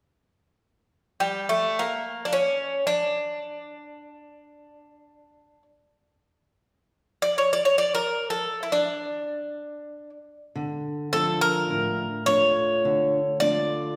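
Reflective and dark, this Greek folk passage, taken from a longer piece, unfolds in free time as a solo bouzouki carries the melody from 1.2 seconds, its bright, metallic double strings ringing up front with some octave-doubled courses. At 10.6 seconds a fingerpicked steel-string acoustic guitar enters beneath it on a D minor chord, its old strings giving a woody, shadowed accompaniment. Both sit in a wet recital-hall reverb that lends the recording the lingering air of a church or concert hall.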